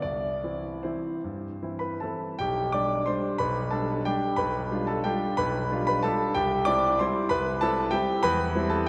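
Classical piano waltz in 3/4, this short excerpt from a longer piece has a graceful, sparkling mood and a rubato feel, its tempo drifting between 146 and 202 BPM in C major. A clear concert grand plays solo throughout the 8.9 seconds, reaching from B1 up to D6, with a deep bass and long sustain. The instrument sits up front with a polished, present tone, while a wet church reverb with a 3.3-second decay surrounds it in a lofty, resonant space. The harmony opens on C, moves through G/B and G7/B as a new section begins at 2.4 seconds, then settles back to C before closing on C/E.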